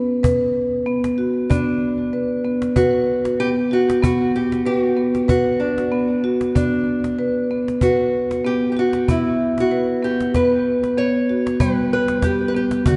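A mellow, round marimba played with soft mallets opens with arpeggios over a B5 chord, joined at 0.2 s by a snappy cajon struck with hard hands and at 1.5 s by a small, fingerpicked nylon-string guitar melody carrying tape echo, forming a gentle, meditative world piece in B hirajoshi at 95 BPM with a light sixteenth-note swing that moves through Emadd9/B back to B5 before settling on G, set in a wet church reverb with a dark, warm production and cut from a longer piece.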